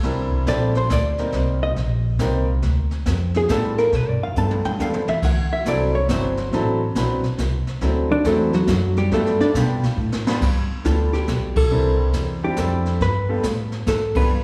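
Relaxed and swinging, this small-group swing and bop jazz cut, taken from a longer piece, moves at 139 BPM in a lilting 3/4 over G mixolydian, with a dark, clean, compressed hollow-body electric guitar entering at 0.5 s to carry the melody as a solo until 10.4 s, a woody, growly pizzicato upright bass sitting up front, a clear, open concert grand piano comping with deep bass, and a distant, roomy brushed drum kit with a boomy kick adding fills before the band lands accents at 11.5 s, all bathed in a lush scoring-stage reverb.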